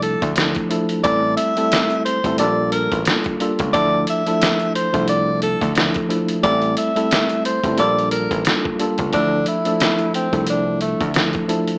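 A breathy, jazz-style tenor saxophone solo with vibrato leads this dark, moody boom-bap hip-hop excerpt, up front over a lightly swung groove of worn, slightly out-of-tune tine electric piano with gentle overdrive and cassette-tape coloring, a punchy picked electric bass, and a compressed, pitched-down, gritty sampler-style drum kit of thumpy kick, medium-tuned snare, rim click and hi-hat, the mix framed by vinyl crackle, a small-speaker tone and moderate studio reverb.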